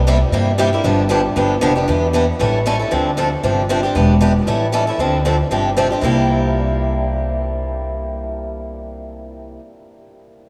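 A woody, dark upright bass with gut strings opens this playful excerpt of acoustic string swing in the jazz manouche style, plucked pizzicato with a thumpy tone, and a bright, boxy picked acoustic guitar with fresh strings joins at 0.1 seconds, up front in the mix as it carries the accompaniment. The tune swings briskly at 232 BPM in 4/4, set in C mixolydian, and the chords move from C7 and G7 into a repeated Em7, A7, Dm7, G7sus4 run before landing back on C7 at 6.0 seconds. The whole recording sits in a vast, echoing cathedral space whose long, wet reverb hangs around both players until they stop together at 9.6 seconds.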